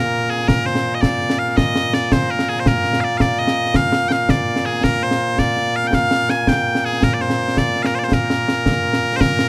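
Loud, piercing bagpipes carry a stirring, proud melody up front in this short Scottish pipe music excerpt in a straight 6/8, joined at 0.4 seconds by close, acoustic concert snare and bass drums with dark cymbals under light reverb.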